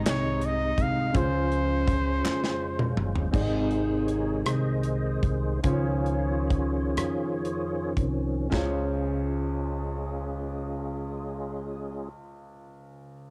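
In a slow 6/8 sway at about 35-55 beats per minute, this hopeful, reverent gospel fragment in Db major opens with a bright, vibrato-laden trumpet melody over a punchy, airy drum kit, crisp background handclaps, a faint bowed string section, a woody pizzicato upright bass and a grand piano with deep, natural lows. A drum fill arrives at 2.2 seconds, and from 3.3 seconds the fat, lightly overdriven tonewheel organ takes an up-front solo through its slow rotary speaker and chorus vibrato, with audible key click, as the tempo slows. The drums stop at 8.8 seconds, the organ and bass carry on until 12.1 seconds, and the piano rings through the final moments to 13.3 seconds, all carrying the soft grit of a home cassette recording in light reverb.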